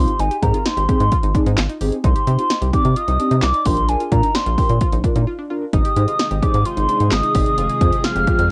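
A hollow, woody clarinet-like synth lead with chorus and vibrato carries the melody up front in this melancholic, cool synth-pop excerpt at 130 BPM, over brassy detuned synth brass, a bright wave-folded analog pluck arpeggio with delay, a rubbery, nasal square bass, and a punchy analog drum machine of kick, snare, hi-hat and handclaps, pausing for a brief break at 5.3 seconds before a silky string machine drifts in at 6.1 seconds as the chords move from Ab through Cm and Bb, back to Ab and on to Fm, all with a light reverb and the tape-worn feel of a home cassette recording.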